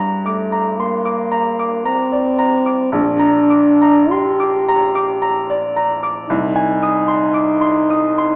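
A recital hall's generous reverb surrounds this short passage, heard through a small-speaker sound. It is a romantic classical duo in G minor, slow and rubato at roughly 48-59 BPM in 3/4, tuned to A4 = 436 Hz, with a yearning, solemn mood. A bright baby grand piano opens at 0.0 seconds as accompaniment, its brilliant, open tone ringing with long sustain across a broad span from Bb1 to Eb6. The French horn joins at 0.3 seconds with a mellow, distant, roomy solo melody in the classical style, set slightly above the piano in level and kept to a narrow register between A3 and G4. Both instruments sit up front, moving from G minor through Gm/Bb and arriving on Ab/C at 6.3 seconds before the fragment breaks off at 8.4 seconds.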